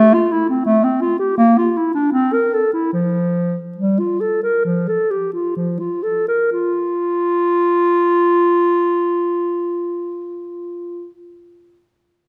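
Rubato in 4/4 between 60 and 86 BPM, easing slower through the first 6.5 seconds, this serene, flowing passage from a longer baroque-style classical fantasia for unaccompanied clarinet in F major, tuned to A4 = 437 Hz, gives a mellow solo clarinet with a soft attack, placed up front and ranging from F3 to Bb4 from 0.0 to 11.2 seconds, wrapped in a wet recital-hall reverb with a 1.7-second decay.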